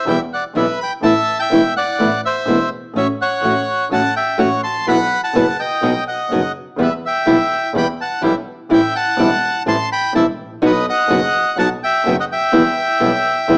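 Heard through a small speaker with light reverb, this elegant, playful tango fragment, cut from a longer piece, moves with a rubato feel as a reedy, dark bandoneon carries the melody up front, a fingerpicked nylon-string guitar accompanies, and a distant, earthy bowed double bass with light vibrato sits beneath.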